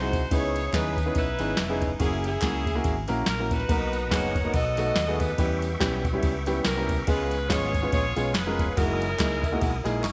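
Bright 1980s-style digital production with plate reverb and a small room ambience frames this reverent, jubilant uptempo gospel excerpt at 142 BPM, swung in 4/4. An edgy saxophone section with vibrato and digital delay carries the melody over an intimate grand piano with audible action noise, a round, punchy fingered electric bass, and a soft vintage rhythm box with deep kick, crisp snare, ride cymbal and gated reverb, while tambourine and group handclaps sit dry in the background. A reedy tonewheel organ with key click, chorus vibrato and slow rotary speaker enters with sustained chords at 3.7 seconds, and the piano plays a fill at 9.2 seconds.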